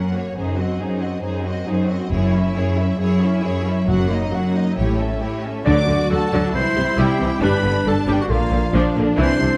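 At a straight 136 BPM in 4/4, this soaring, heroic adventure film cue sets a lush violin melody over a second violin line, smooth violas, an up-front clear cello section and expressive double basses entering at 0.4 s, with very quiet dry timpani from 2.1 s, before a vintage-toned solo clarinet and background trombone chords join at 5.7 s as the harmony shifts through D, C, G and Bb in a dark scoring-stage space.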